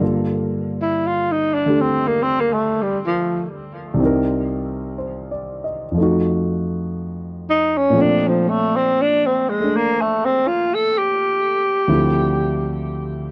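This jazz ballad unfolds at an unhurried, swung pace in 4/4, its mood melancholic and intimate. A concert grand piano provides the accompaniment throughout, sitting up front with a warm tone, a deep bass and short sustain. The tenor saxophone carries the melody as a solo from 0.8 to 12.9 seconds, its mellow, breathy subtone shaped by vibrato, soft attacks and scooped notes. Its sound is vintage and whispered, touched with tape echo. The harmony moves from Gm9 through Cm7 and F7b9 to Bbmaj7, settling on Dm7 near the close. The sound is dry and close, in the manner of a 1970s studio, with a modest booth ambience, and the passage is cut from a longer piece.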